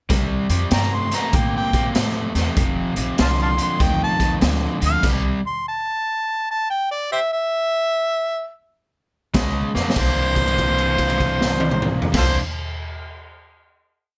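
A gritty, up-front recording with light reverb opens this short, soulful electric blues shuffle in C mixolydian at 97 BPM, where a raw garage drum kit with a punchy kick and dark cymbals drives the swing beside a bright, overdriven stack guitar playing a boogie riff and a woody, growly pizzicato upright bass playing a quarter-note figure. A mellow harmonica with light vibrato and tongue slaps carries a jazz-style, lick-based theme from 0.7 seconds, continuing alone through the band's stop from 5.0 to 9.3 seconds. The band returns with a drum fill before everything settles onto a held C9 final chord from 10.0 seconds.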